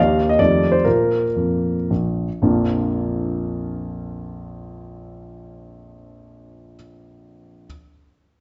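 A solo grand piano opens this short fragment of a romantic classical dance in triple time, its dotted rhythms carrying a rustic, proud character as the pulse slows over the first 2.4 seconds and the rubato lets the phrases breathe. The piano sits up front with a warm, intimate, natural tone, the clatter of its action clearly audible. A reverberant recital hall adds a generous wash around it, and the mellow top end gives the sound a rounded, slightly dusky quality as a new section begins at 2.4 seconds.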